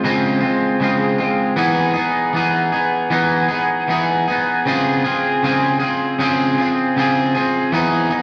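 Hazy and laid-back, this short indie pop excerpt cut from a longer piece moves at 78 BPM in a straight 4/4. A lone electric guitar at the edge of break-up carries the whole passage from 0.0 to 8.2 seconds, sitting up front with a twangy, picked tone smeared by lush chorus, warbly pitch drift and analog delay as the harmony moves from Dbmaj7 to Emaj7 and back. A moderate echo chamber reverb and an echo-heavy, cassette-tape sound give the recording a worn, dreamy haze.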